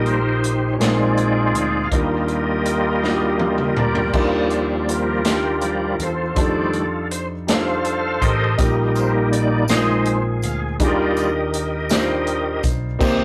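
A reedy tonewheel organ leads this slow, jubilant gospel passage in Eb major from the opening moment, its sustained chords turning through a slow rotary speaker with chorus vibrato and audible key click. Beneath it, a clear grand piano accompanies with long sustain and the intimate sound of its action, while a round, amped fingered electric bass anchors the low end. A big-band drum kit arrives at 0.1 seconds in a straight 6/8 at 54 BPM, its punchy kick and medium-tuned snare sitting up front against dark, roomy cymbals. Drums and piano both add a fill at 3.0 seconds as the opening phrase gives way to a second, longer statement of the same material, moving through lush chords such as Ebmaj9 and F13 under the organ's hopeful solo line. A jingly tambourine slips in quietly in the background at 8.6 seconds, and the whole cut carries the rough, tube-saturated character of a rehearsal room with a short, wet reverb.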